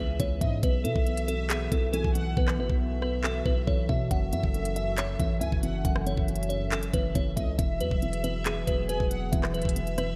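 A half-time trap groove of knocking kick, handclaps, rim clicks and crisp hi-hats sits up front, with the hats dropping out from 2.4 to 4.1 seconds, while a deep, sine-toned 808 bass holds long notes beneath this dark, hard-hitting hip hop excerpt. A crystalline FM synth bell carries the melody with warbling chorus, filtering and analog delay, joined by a woody, bowed violin section with vibrato and its own delay. Underneath, a felt-muted upright piano adds soft, intimate accompaniment and a detuned, wave-folded analog pad sustains moody chords in the background through a progression from C#m7 to Eadd9, all wrapped in light digital ambience.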